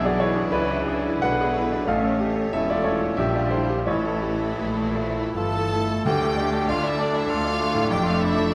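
A brooding, passionate romantic classical movement for piano and orchestra in D minor and 3/4, moving at 75-100 BPM with a rubato feel. An intimate, up-front baby grand, its action noise audible and its notes sustaining long, carries the melody alongside intense, vibrato-rich violins, while a smoother second violin line, very quiet violas, mellow horn chords, and bowed cellos and double basses fill the background under a moderate scoring stage reverb. A present cor anglais joins at 5.4 seconds, and at 6.1 seconds the harmony settles on D minor as a hollow, airy flute ensemble, a very quiet clarinet and briefly sounding timpani enter.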